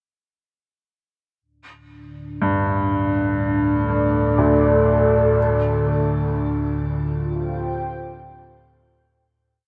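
Drenched in a huge ambient reverb with a 7.5-second tail, this vast and ominous dark ambient drone piece at 61 BPM opens at 1.4 seconds with a moody, detuned analog pad of sawtooth and triangle tones, thickened by a sub octave and chorus and bathed in shimmer reverb as it holds slowly shifting chords up front, while a deep rumbling drone settles beneath from 2.2 seconds, and a warm, open baby grand piano enters at 2.4 seconds with long-sustaining arpeggios in two slow loops of unequal length drifting against each other through diffuse delay and its own shimmer reverb.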